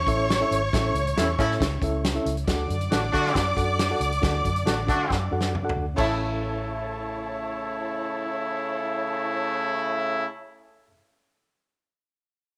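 A joyful, uplifting excerpt of uptempo 1960s-style soul opens with smooth-topped bowed strings rich in vibrato and portamento over a dark, round, foam-muted electric bass, joined at once by a mellow, reedy electric piano with fast tremolo and a punchy, up-front acoustic drum kit whose fill from 5.1 seconds closes its part at 6.1 seconds, while a warm, roomy horn section enters at 1.2 seconds, all set in moderate plate reverb and small room ambience.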